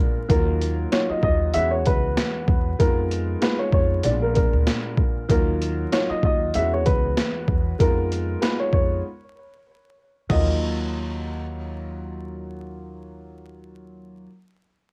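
Two dark pianos open this moody, tough boom-bap hip-hop excerpt, a smooth, woody upright carrying the melody over boxy, deep-voiced grand chords, both filtered and hazed by cassette tape, before a pizzicato gut-string upright bass and a gritty, pitched-down sampler kit with a thumpy kick and high-tuned snare arrive at 0.3 s, the overdriven drums sitting up front through a break at 9.0 s until they drop out at 10.5 s, the mix framed by light reverb and vinyl crackle.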